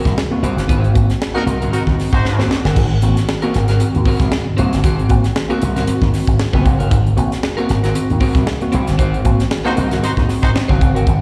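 Playful and strutting, this short funk cut at 116 BPM in Ab mixolydian swings its sixteenths over an Ab9 chord, with a tight drum kit of bright cymbals, high-tuned snare and punchy kick up front beside an envelope-filtered slap bass, a tine electric piano's stabs carrying medium tremolo and slapback echo, a slightly broken-up electric guitar with subtle chorus comping underneath, and a smooth-topped horn section slipping in briefly at 1.3 s and again at 9.7 s, band accents and a drum fill at 2.2 s marking the way, all heard as a live gig through the venue's PA in a recital-hall reverb.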